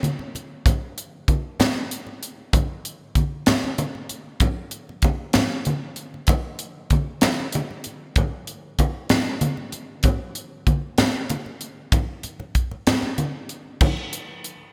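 Jazz fusion in a slick, nocturnal mood, this excerpt moves in a lilting 6/8 with a straight feel. A crisp fusion drum kit sits up front, its crash cymbal, hi-hat, tight kick and high-tuned snare sounding airy and polished in a studio room, with gated reverb on the kit. Congas play alongside from the start, mixed a little lower, their thin skins bright yet damped and low-tuned, with a compressed, saturated edge. The whole passage stays in a single section, and the congas drop out at 14.0 seconds just before the drums finish at 14.6 seconds. A lush hall reverb and bright 1980s-style digital production give the groove a sleek, late-night sheen.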